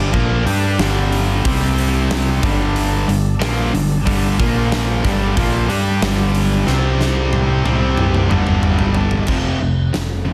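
The recording is dense and heavily limited, with a modern master and a studio ambience. This hard rock excerpt in G minor drives aggressively at 92 BPM in straight 4/4, moving through Gm, C5 and Bb5 before landing on F5 near the end. Up front, a huge arena drum kit pumps in a big room with a fat snare and punchy kick, and a drum fill runs from 6.7 to 9.3 seconds. A bright, tight distorted guitar carries the riff up front alongside a second, overdriven guitar set in the background with spring reverb. A growling, overdriven picked bass, direct and amped, anchors the low end. Very quietly underneath, a thick, gritty tonewheel organ holds sustained chords through a rotary speaker until 9.3 seconds, when a short closing section begins.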